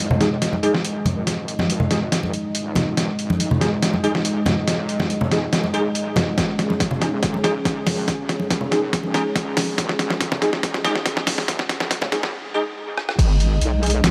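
A gritty, pitched-down trip hop sampler-style drum kit sits up front with crash, hi-hat, rim click and a medium-tuned snare in this meditative, dark deep dubstep build-up at 141 BPM in half-time and G# minor, joined by distant congas soaked in dub echo, a punchy layered electronic kick from 6.4 seconds, a heavy saturated square-and-sine wobble bass in the background, bright bell-like tine electric piano stabs under a filter sweep and dub echo, and a deep, moody detuned sawtooth pad with chorus, all in light digital ambience and pausing for a brief break at 12.3 seconds.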